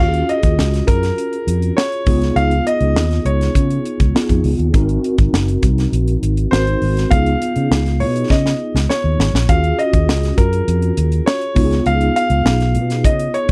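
A straight 4/4 groove at 101 BPM drives this slick, urban stretch of polished 1980s jazz-funk pop in Eb minor, cut from a longer piece. A growly, punchy fingered electric bass and a crisp fusion drum kit with a high-tuned snare sit up front, while a mellow tine electric piano with ensemble chorus plays the accompaniment beneath a clear, intimate grand piano melody carrying slapback echo and audible action noise. A drum fill at 8.3 seconds stands out in the dry, close studio sound as the chords move from Ebm11 through Db7 and Ab9.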